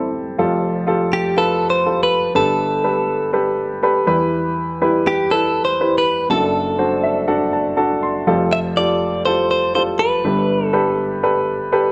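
This pop excerpt moves at a driving 122 BPM in a straight 4/4, with an earnest, forward-leaning mood. A clean, direct-recorded electric guitar carries the melody in a narrow upper range, its picked, compressed tone bright and twangy and placed up front. A woody upright piano with short sustain supplies the accompaniment across a broad span from deep bass to high treble, also sitting close to the listener. The harmony cycles through Fadd9, Gadd9, Em and D/F#, and the piano plays a fill at 6.8 s before the progression returns to Fadd9. The guitar drops out at 10.9 s, leaving the piano to finish the passage, all set in a moderate stage reverb with a touch of small-room ambience.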